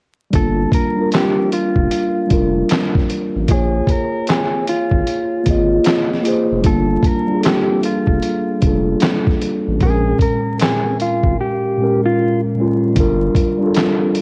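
A dark, fingered electric guitar melody treated with phaser and analog delay floats over a mellow tine electric piano, a thick, saturated sub bass and a muffled, thumpy sampler-style drum kit with handclaps in this melancholic, nostalgic, swung lo-fi hip hop excerpt, where the drums fall silent from 11.4 to 13.0 seconds and worn, warbling tape and vinyl crackle colour the whole recording.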